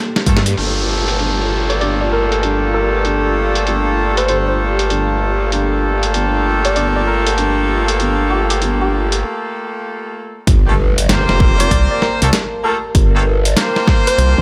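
A swung sixteenth-note groove drives this playful, gritty glitch hop piece, cut from a longer track, with a pitched-down, tape-tinged boom bap kit of filtered hi-hat and snare under a growling, overdriven bass and up-front jazz horn stabs roughened by 12-bit sampler grit, sidechain pumping and delay. Behind them sit a woody, wave-folded pluck melody colored by cassette tape and chorus, a moody, detuned analog pad and a nostalgic, warbling tape-like pad, both very quiet, while a downlifter sounds early on. After a break at 9.2 seconds, the drop at 10.5 seconds brings back the punchy electronic kick, heard briefly at the very start, along with an electronic impact, and a bouncy, hollow square bass joins at 11.7 seconds.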